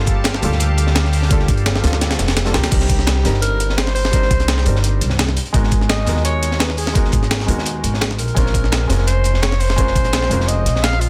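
A breathy alto saxophone carries the melody in this rolling, dreamy liquid drum and bass passage at 170 BPM. It enters at 2.5 seconds with a punchy, pop-style solo tone, vibrato and a touch of delay. Beneath it, a woody, thumpy pizzicato upright bass sits up front, while a soft, felt-muted upright piano gives intimate accompaniment with short sustain, audible action noise and its own delay. A vintage analog pad, detuned and warbling with chorus and 12-bit sampler grit, holds sustained chords only until 2.7 seconds. The drums layer an overdriven, knocking electronic kick, a compressed, pitched-up sampler-style break with crash, hi-hat and snare, and a dark, saturated second break tucked in the background with filtered hats and snare; a drum fill and a brief kick dropout lead into the change at 2.7 seconds. The harmony moves through Gm9, Cm9, Abm9 and Bbm9 under light reverb and a dense, heavily limited modern master.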